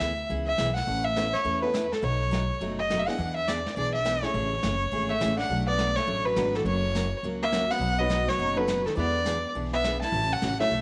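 Bathed in a moderate echo-chamber reverb with a faint mains hum underneath, this cheerful western swing excerpt in A major moves at a brisk 207 BPM with a swinging eighth-note feel. An up-front bowed fiddle carries the smooth melody with light vibrato over a bright dreadnought acoustic guitar with audible finger squeak, a thumpy, dark gut-string upright bass played pizzicato, and a brushed drum kit with a rolled-off top sitting in the background. A jangly, detuned honky-tonk upright piano slips in at 1.2 seconds, and a clean, hollow-body archtop guitar, miked and amplified, adds a second line from 5.1 seconds.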